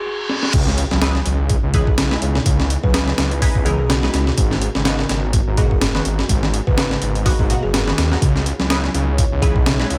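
Funky and gritty, this breakbeat clip opens with an electronic reverse cymbal and impact in the background before the drop lands at 0.5 s. The sampler-style drum kit sits up front, compressed and pitched up, with a thumpy kick, a high-tuned snare and a low-pass filter on its hats, snare, cymbals, kick and room. A thick, detuned saw bass, also up front, adds beating, menacing weight. Behind them, a reedy electric piano riff with fast tremolo and tube saturation plays through built-in speakers, and a band-passed, nasal chord stab with ring modulation, phaser, analog chorus and digital delay arrives at 1.0 s. A buzzing kalimba with a woody, hollow-box tone and an old record sound carries the melody through digital delay, while a very quiet, moody analog pad with a slow attack enters at 1.2 s. The harmony moves between C#m9 and G#m9 with a light swing on the sixteenths, set inside a digital ambience.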